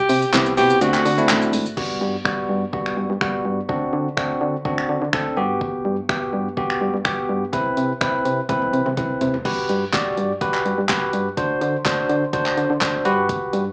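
Dance-pop with an upbeat, carefree mood, heard as a live gig through a venue's PA with a moderate club reverb and a small-speaker sound, cut from a longer piece. It opens on a break where a clear, forceful alto saxophone plays a brief solo melody with vibrato and digital delay, ending by 1.5 seconds, while a barely audible group handclap, hollow and dry, sits underneath. A bell-like tine electric piano carries the accompaniment up front, bright and clean, moving through Cmaj7, D7 and Gmaj7 chords. A punchy, round FM bass with a fast attack and sidechain pumping anchors the low end. The deep house drum kit is electronic and layered, with a deep kick, fat snare, hi-hat, shaker, finger snaps, handclaps, toms and crash cymbal, tape-tinged and up front, and a drum fill lands between 8.5 and 9.5 seconds.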